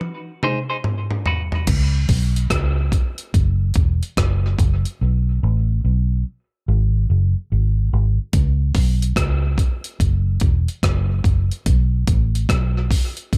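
A dark, round, foam-muted electric bass sits up front in this short dub reggae excerpt, entering at 1.7 seconds and holding the low register from E1 to C#2 with an amped, vintage tone. The piece moves at 72 BPM in 4/4 with a swung sixteenth-note feel, and the mood is spacious and deep. A sampler-style breakbeat drum kit opens the recording with a fill during the opening break, its gritty, compressed sound built on a thumpy kick, hi-hat, rim click, toms and crash cymbal. Between 0.4 and 1.4 seconds, a bright, twangy clean electric guitar adds a brief picked figure, colored by harmonic tremolo, a high-pass filter and tape echo. The harmony settles into a cycle of suspended chords, moving through Bsus2, Esus2, Asus2 and F#sus2, and the dry mix carries little reverb, leaving each part close and present.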